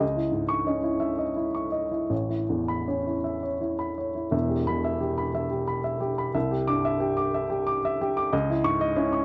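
A woody, up-front upright piano plays alone in an unhurried, rubato 6/8 lilt, moving through melancholic, wistful neoclassical minimalist harmonies from C#madd9 and Aadd9 to Em and Cadd9 before returning to C#madd9 at 8.3 seconds, all set in a moderate studio reverb in this brief fragment of a longer piece.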